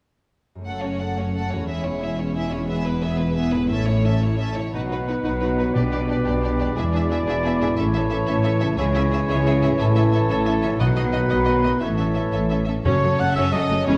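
Cinematic heroic adventure film score in a triumphant 6/8 at 118 BPM, opening with a ringing, very quiet concert harp arpeggiating beneath a chamber violin section carrying the melody, lush symphonic violins, violas, cellos and double basses filling out the harmony and bass, and a mellow French horn section holding sustained chords. At 4.7 seconds the music begins to build as a large, airy flute ensemble, a solo oboe and a mellow clarinet add second lines, a bright trombone section sustains chords, and a clear trumpet section punches out stabs, with timpani on medium mallets entering at 5.8 seconds and returning near the close. The progression moves through B and E7 before settling back onto F#m, all set in a wet recital hall reverb.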